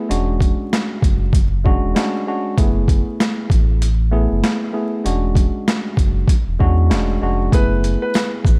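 A swung 97 BPM boom-bap groove in 4/4 opens this dark, gritty hip-hop excerpt in F# minor: an overdriven, pitched-down sampler kit with a thumpy kick, high-tuned snare, hi-hat and shaker sits up front beside a deep sine sub bass doubled at the octave. A worn, slightly out-of-tune tine electric piano, filtered and run through cassette tape, comps between E13 and F#m11 under vinyl crackle and light reverb. At 7.5 seconds a woody upright piano adds a brief B4 melody note, and a very quiet, jingly tambourine appears at 8.1 seconds.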